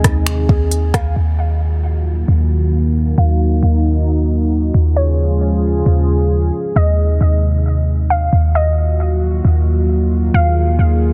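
A dense, heavily limited mix with little reverb carries this short ethereal, melancholic cut from an atmospheric cloud-rap track at 134 BPM in a half-time 4/4 feel, set in Eb dorian and moving through Ab, Ebmadd9 and Db. A moody, detuned analog pad with chorus, sidechain pumping and a low-pass filter sustains chords throughout over a deep, boomy 808-style bass that sits up front, while soft, muted felt-like synth keys arpeggiate with chorus and delay until 1.2 s, and a smooth R&B kit of soft kick, hi-hat, finger snaps and rim click with a softly clipped snare plays only until 1.0 s. From 0.9 s a warbling, lo-fi dusty pluck carries the melody through chorus, filtering and delay, and from 1.2 s a filter sweep runs across the rest of the excerpt.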